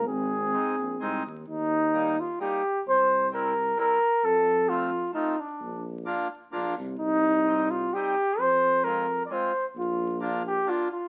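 Jolly and festive, this short cut from a longer alpine folk tune moves at 131 BPM in a straight 3/4 lilt, in Eb major, played by a small alpine dance band. A mellow flugelhorn carries the melody up front from the start, in a classical style, while a soft-attacked euphonium with vibrato adds a brief second line that stops at 1.2 seconds. Beneath them, a tuba with light vibrato and a smooth top holds the bass, and a reedy, hollow accordion enters at 0.5 seconds to fill out the accompaniment in the middle of the sound. The harmony moves through Ab, Eb, C, F, Bb, Cm and Fm before settling back on Bb, with a new section beginning at 1.5 seconds. The recording has the sound of a very old 78 rpm record, with vinyl crackle and a moderate studio reverb around the players.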